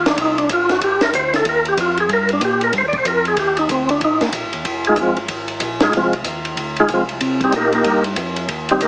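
A brisk swung 4/4 at 188 BPM drives this smoky, soulful soul jazz organ trio in C minor, cut from a longer piece and running about 8.9 seconds. A percussive tonewheel organ carries the melody as a solo from the first moment, its fat, lightly overdriven tone marked by key click, second harmonic percussion, chorus vibrato and a slow rotary speaker, sitting up front in the mix. Beneath it, a mellow tonewheel organ handles the bass line with a round, dark sound, also lightly overdriven and turning through chorus vibrato and a slow rotary speaker. A compact cocktail drum kit joins at 0.1 seconds with hi-hat, ride cymbal, a punchy kick and a high-tuned snare, its acoustic, smooth character dulled by a rolled-off top yet placed close and forward. The harmony moves from Cm7 to Fm7 at 4.6 seconds and back to Cm7 at 7.2 seconds, all inside a moderate club reverb, while heavy multiband compression gives the whole a squeezed, small-speaker radio quality.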